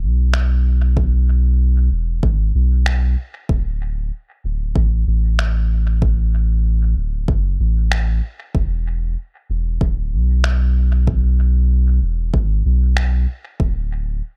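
A round, soft dub sub bass with a fast attack and tube saturation sits up front in this spacious, hazy ambient dub fragment at 95 BPM in E mixolydian with swung sixteenths, joined at 0.3 seconds by muffled, sampler-style finger snaps carrying dub echo in a large-room ambience and at 1.0 seconds by a deep, tape-warm electronic kick, within an otherwise dry mix cut from a longer piece.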